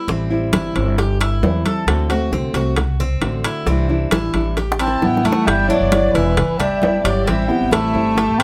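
Danceable and warm, this Cuban son and guajira passage at 134 BPM in G major sets fingerpicked, full-bodied nylon-string guitar and metallic, double-strung tres arpeggios over a woody, thumpy upright bass up front and close, dry bongos, congas and ringing timbales, until a drum fill at 4.6 seconds ushers in a mellow, vibrato-laden bass clarinet melody at 4.8 seconds, joined by a dark, reedy violin section in the background, within light reverb.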